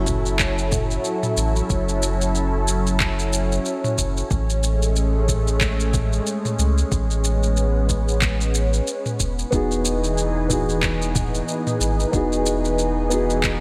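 A light reverb and digital ambience frame this sunny sunset chillout excerpt, cut from a longer piece and set in a swung 4/4 over F#m7, Amaj7 and Emaj7 chords. Up front, a lush, detuned sawtooth pad treated with chorus, phaser and shimmer reverb holds sustained chords beside a deep, round sine sub bass. A soft, overdriven electronic kick and a produced R&B kit of handclaps, shaker and toms enter at 0.1 seconds, and a dark, boxy grand piano joins at 9.5 seconds with tape echo and shimmer reverb.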